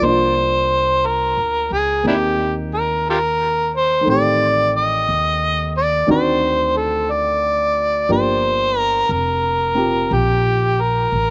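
A dry recording made outdoors, with little reverb, carries this intimate, melancholic jazz ballad excerpt in C minor at a slow 60 BPM with a swung 4/4 feel. Up front, an amplified, overdriven harmonica takes the solo melody with a gritty edge, light vibrato, scooped notes and tongue slaps, while a baby grand piano with a natural tone comps underneath; both carry a slapback echo. A woody, thumpy pizzicato upright bass anchors the low end through the full 11.3 seconds as the harmony moves from Cm11 through Am7b5 and D7b9 to Gm7.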